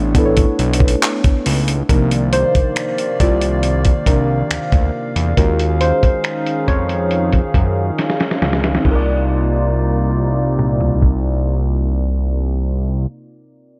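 Contemporary R&B at a slow 69 BPM in C minor, this late-night, longing excerpt pairs muted, felt-like synth keys with chorus and phaser against a hollow, flute-like pad that holds sustained minor-eleventh chords in a light digital ambience. A fat, detuned analog bass with a filter sweep sits up front beside a dusty, gritty sampler-style drum kit of thumpy kick, snare, hi-hat, finger snaps, handclaps, toms and crash. The dark synth keys take a solo from 1.9 s to 8.8 s, and a drum fill leads into the closing section at 8.8 s.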